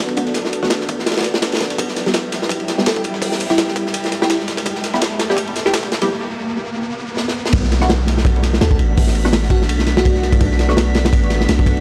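Dark and atmospheric, this drum and bass cut with jungle roots runs at 167 BPM in B minor, with a 16th-note swing under its Bm7 and Em chords. A crunchy breakbeat kit sits up front, saturated and punchy with dark cymbals and a rolled-off top, while a dusty, compressed soul sampler-style kit adds hi-hat and snare in the background until 6.1 seconds. Beneath them, a deep, sine-toned 808-style bass holds long decaying notes, and a silky, warbling string machine with ensemble chorus and vintage sampler grit sustains the harmony. A muted, detuned sawtooth dub chord stab with phaser and dub echo rides a filter sweep through the build-up as an electronic riser climbs toward a brief break and drum fill, landing on the drop at 7.5 seconds. A sparkling, bell-like FM electric piano with cassette tape character and dub echo plays short melodic phrases, and from 8.2 seconds an airy, breathy wind-like noise texture drifts in with its own reverb. 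The recording has a dry, gritty hardware feel with transformer saturation and only a light touch of room.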